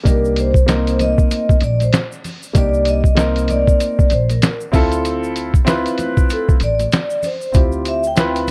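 Swung sixteenths over a steady 4/4 pulse drive this cool, smoky jazz-hop fragment, anchored by an up-front, compressed, pitched-down sampler-style drum kit with a thumpy kick and a medium-tuned snare. A dark concert grand piano with audible action noise and long sustain accompanies a soft-mallet vibraphone solo whose ringing, close-miked tone carries slow motor vibrato and a slapback echo, as the harmony moves from Cm9 to Dm9 at 4.7 s. Woody pizzicato upright bass holds the low end, while tube shaker and congas sit in the background of a dark, warm small-room production.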